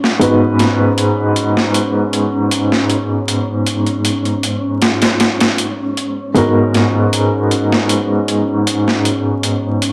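This brooding, dark trip hop fragment, cut from a longer piece, opens with a felt-muted upright piano, a sampler-style drum kit and a wind-like tuned noise texture sounding together from the very start. The piano sits up front, soft and intimate, its mellow tone colored by tremolo and tape echo, with the mechanical noise of its action clearly audible as it moves from B/G# at 0.2 seconds to G#m9 at 6.4 seconds. Beside it, the boom bap kit of hi-hat and high-tuned snare is compressed, pitched down and overdriven, with high-pass filtering thinning the hats, the snare and the large-room sound it was re-recorded in. In the background, an airy, breathy sine layer holds a sustained C#4, fading in slowly and carrying its own reverb. The whole recording is dry and gritty, with transformer saturation, vinyl crackle and a light digital ambience.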